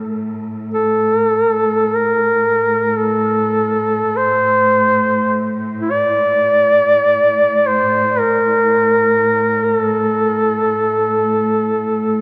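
A deep, wet cathedral reverb surrounds this short cut from a longer Caucasian folk lament, giving the recording a solemn, mournful air. A rich studio string section opens the piece at 0.0 seconds, holding a bowed drone on a low A with vibrato, and it sits quietly beneath the melody throughout. At 0.7 seconds a mellow duduk enters up front as the solo voice, singing a folk-style melody between E4 and D5. Its vibrato and smooth top give the lament a tender, voice-like quality against the even ensemble bed. The tuning rests at A4 = 437 Hz, and both parts carry on together until the cut ends at 12.2 seconds.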